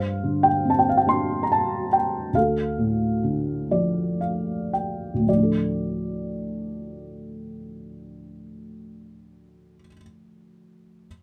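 Melancholic and dark, this lyrical classical excerpt features a lone felt-muted upright piano in D minor, soft and boxy with a thick-felt intimacy, sitting up front in light reverb as it drifts in rubato 3/4 at 54-72 BPM, slowing through the opening 5.3 seconds with a fill from 3.2 seconds while the harmony moves from Gsus4 to Dm.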